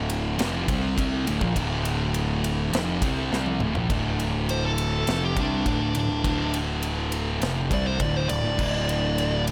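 A straight 4/4 pulse at 102 BPM drives this brooding, hypnotic excerpt of stoner and doom metal in D minor, resting on a single Dm chord. A big acoustic rock kit with a punchy kick, medium-tuned snare, bright crash and ride cymbals and toms anchors the groove, with a drum fill at 3.3 seconds leading into the solo section. Two thick fuzz guitars play the riff in the background, one dark and one warmer. An overdriven fuzz bass sits up front, picked, direct and amped. Beneath them, a very quiet, fat percussive tonewheel organ holds sustained chords with key click, chorus vibrato and a slow rotary speaker, while a compressed, distorted fuzz lead guitar enters at 4.5 seconds with a solo melody coloured by delay, all set in a small room with light reverb.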